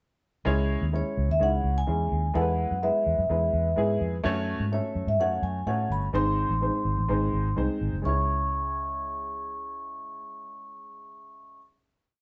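Uptempo 1960s-style soul in C# minor at 126 BPM, this short, complete piece feels passionate and driving, with the whole band sounding as if it plays live together in one room under a moderate studio reverb and a darkened top end. A worn, woody upright piano, slightly detuned, sits up front playing quarter-note chords in drop-2 voicings with grace notes, while a dark, round, foam-muted electric bass, amped and also up front, carries a melodic, syncopated soul line with chromatic approach notes; both begin at 0.5 seconds. The vibraphone enters at 1.0 seconds, its soft mallets and stilled motor giving a mellow, ringing, metallic tone as it sings a motif-based melody built from song-like phrases. The verse moves through C#m, E, F#m and G# before everything settles onto a final C#m chord at 8.0 seconds, which rings until the close at 11.6 seconds.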